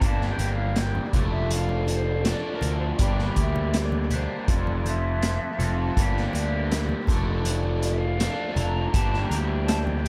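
Entering together at once, a bright, double-tracked overdriven garage guitar riff soaked in phaser and analog delay, a round, fuzzy picked electric bass and a punchy, delay-tinged vintage kit with a medium-tuned snare and rolled-off top lay down a mysterious, hypnotic psychedelic rock groove at 81 BPM in G dorian, while a distant, pure-toned small flute group sustains vibrato chords in the background and soft-handed congas slip in very quietly at 0.4 seconds, the echo-heavy mix cycling around Gm, Dm/F and Fmaj7 in this passage cut from a longer piece.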